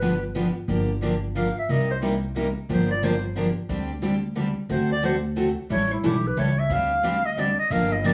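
Fiery yet bittersweet, this short excerpt of acoustic string swing in G minor moves at a brisk 180 BPM in 3/4 with a 62% swing on the eighth notes. A clarinet carries the melody, its vintage subtone and soft attack colored by vibrato and a plate reverb, and from 0.7 seconds it takes a solo up front in the jazz manner. Two picked steel-string acoustic guitars supply the accompaniment throughout: one bright with fresh strings and a dreadnought body sitting forward, the other quieter, full-bodied and jumbo-toned beneath it. A pizzicato upright bass with gut strings anchors the bottom, its woody, dark thump placed close to the listener. The harmony moves from G7 through Gm7 and Cm7 toward D7sus4, D7 and A7, and the whole group sits in a moderate studio room ambience.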